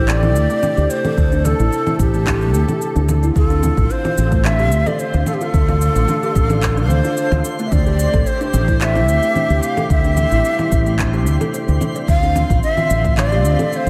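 A breathy, bright ney sings an expressive melody through analog delay over veiled, muted strings pumping under sidechain, woody kalimba arpeggios trailed by tape echo and a round, punchy fretless bass with tube saturation, as electronic handclaps, shaker and congas join almost at once, a deep electronic kick enters at 1.2 seconds and a twinkling granular shimmer surfaces in the background at 4.0 seconds, while a spring reverb gives this hypnotic, mystical organic downtempo piece its echo-heavy haze.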